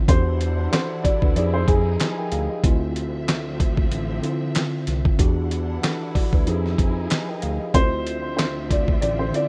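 Boom-bap hip-hop with a reflective, dark mood and a swung groove, built on a gritty, overdriven sampler-style drum kit of thumpy kick, fat snare, hi-hat and handclaps sitting up front, under a smooth sawtooth synth bass with vibrato. A worn, slightly out-of-tune tine electric piano accompanies while a distant, lush bowed string section holds sustained chords through Em9, Fm9 and Dm9. A woody, slightly detuned upright piano with audible action noise and delay carries the melody from 0.1 to 2.6 seconds and returns at 7.7 seconds, all in a rough home-demo mix with digital ambience.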